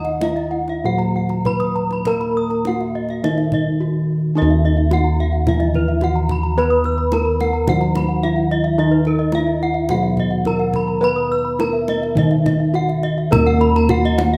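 Heard through a moderate recital-hall reverb, this brief cut from a longer Balinese gamelan piece in Eb pelog moves at a straight 106 BPM in 4/4, with a hypnotic, brilliant mood and sections turning at 4.4 and 13.3 seconds. Round, beating bossed gongs sit up front carrying the bass, while a wooden-mallet bronze metallophone states the melody and a darker, smooth metallophone plays accompaniment in the background. Two more metallophones weave arpeggios above, one struck with horn mallets for an airy, bright sparkle and both sharing the paired tuning's shimmering beats, as a tight, hard-handed kendang supplies the percussion.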